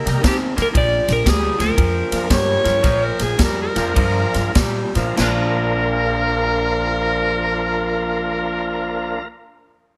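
Under a light reverb, this rollicking, soulful electric blues shuffle in Bb major swings at 94-118 BPM and slows between 0.8 and 5.2 seconds, as a clean lap steel guitar sings the melody with slide, volume swells and tape echo until 4.5 seconds, over a thick, lightly overdriven tonewheel organ turning through a slow rotary speaker, a dark, slightly broken-up electric guitar riffing through a small old amp, a woody pizzicato upright bass and an airy, polished big-band drum kit with a punchy kick that drops out at 5.4 seconds, while a gritty, amplified harmonica enters up front at 2.3 seconds with scooped notes, tongue slaps and light vibrato.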